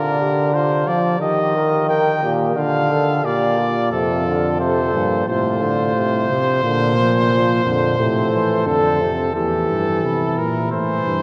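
Drenched in a cathedral's long, wet reverb and heard through worn, warbling cassette tape with drifting pitch, this lively, joyful classical canzona for brass ensemble moves at a straight 88 BPM in 4/4 in Bb major, cut from a longer piece. A clear trumpet with light vibrato carries the melody up front over a mellow, distant flugelhorn second line set back in the room and a soft-attacked euphonium accompaniment, while a smooth-topped bass trombone with gentle vibrato joins on the bass line at 3.9 seconds. The imitative writing runs through chords such as Bb/D, Eb and F before landing on an Edim at 9.4 seconds.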